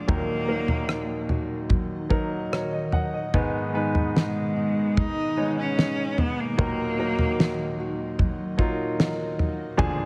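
A damped, dry 70s drum kit with a fat snare, tight kick, rim clicks and toms sets the straight 4/4 pulse of this emotional, heartbroken pop ballad fragment, where a clear, polished baby grand piano accompanies a rich, bowed solo cello melody with vibrato that stops at 8.0 s, while a dark fingerpicked steel-string acoustic guitar with tape echo and an ethereal, airy pad with ensemble chorus and phaser sit in the background of a small, lightly reverberant room.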